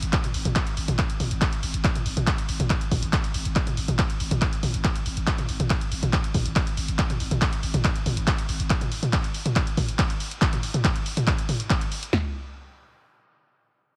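Punchy, dry analog drum machines drive this relentless, intense peak-time techno cut from a longer piece, stacking kick, snare, toms, handclaps, hi-hat and ride cymbal up front through a drop that runs from the start to 12.1 seconds, while a growling, buzzy, saturated 808-style bass pumps under sidechain and low-pass filtering until 8.7 seconds, the whole mix squeezed into a heavily compressed, radio-like sound.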